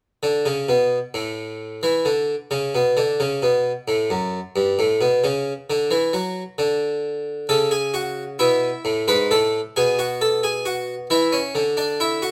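A solo harpsichord, close and up front with a brilliant, plucked Italian-style tone doubled by octave strings, sets out a stately, elegant baroque-style three-part fugue from 0.2 seconds, ranging from its low bass to its middle register, moving through A/C# and B5/A before reaching an E7 chord with its third omitted at 11.1 seconds in a moderate studio reverb, as a passage cut from a longer piece.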